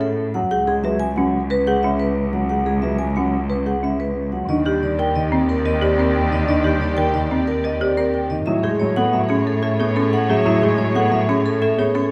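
Minimalist classical pattern music in a bright, hypnotic 6/4, where a ringing, metallic vibraphone carries the melody over woody, rustic marimba arpeggios, a worn piano accompaniment with long sustain and a rich, expressive bowed cello bass, while a lush string section enters at 4.5 seconds with smooth sustained chords as the harmony moves from C#m7 to Ebmaj7 and Amaj9 in a moderate recital-hall reverb.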